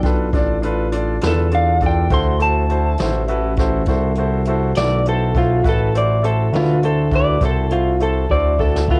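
Swaggering and soulful, this slow 12/8 blues fragment sets a slightly broken-up, up-front electric slide guitar melody with cassette grit over a brilliant grand piano with audible action noise voicing G9 and D9 chords, a mellow ring-modulated synth bass, and a brushed jazz kit with a punchy kick that plays a fill at 8.3 seconds, all in a studio-ambience home recording on cassette.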